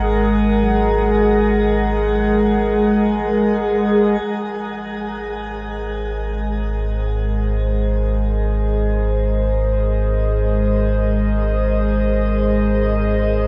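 Ambient music in Ab mixolydian at a slow 59 BPM in 4/4, this luminous, peaceful excerpt is cut from a longer piece and bathed in a lush shimmer reverb. Up front, a warbling, nostalgic pad built from detuned square and triangle tones with a sub octave holds sustained chords, its lo-fi vintage character softened by chorus and a slow attack. Beneath it, a deep, ominous drone on a low Ab rumbles with a dark, sawtooth edge, also sitting prominently in the mix. In the background, a close-miked handpan of nitrided steel, played with soft fingertips, rings out gentle, meditative arpeggios through tape echo from 0.6 to 5.8 seconds. The harmony moves from Absus2 to Abadd9 at 4.2 seconds, where the opening filter sweep on the pad gives way to a fade-in for the rest of the passage.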